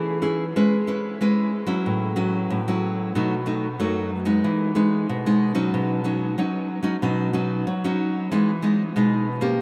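A lone nylon-string guitar opens the fragment, fingerpicked in a bright, classical acoustic voice that sits up front in the mix. The music is a joyful, lively samba in a straight four, with the guitar playing solo from start to finish across a range from F#2 up to B4. Its harmony moves through rich colours, starting on a rootless Amaj7 and passing through E6/G#, F#m7/A and B7 before settling on Emaj7 at 4.4 seconds. A Badd9 follows, and the phrase comes home to Emaj7 at 8.3 seconds. A huge, wet reverb with a very long tail places the guitar in a vast, echoing space, so each note blooms and lingers around it. The passage lasts 9.6 seconds and is cut from a longer piece.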